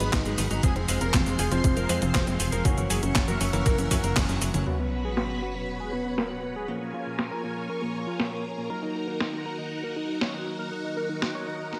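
Lush and melodramatic, this nostalgic italo disco excerpt sets a thick, detuned unison lead with digital delay over vintage string-machine chords, barky bell-like electric piano stabs and overdriven 12-bit drum-machine hits with gated reverb, while a punchy sawtooth sequencer bass, an overdriven thumpy kick and clean, compressed guitar arpeggios drop out between 4.3 and 4.7 seconds, around a drum fill near 4.4 seconds, giving way to a sub drop at 4.7 seconds and a filter sweep on the drums.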